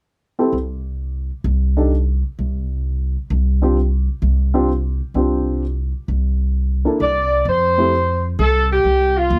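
Swinging and brassy, this short big band swing clip from a longer piece opens with a dark, mellow upright piano, its action noise audible and tuning slightly off, playing accompaniment over a woody pizzicato upright bass on C chords, before a vintage saxophone section with light vibrato takes the melody at 7.0 seconds, all heard close and dry.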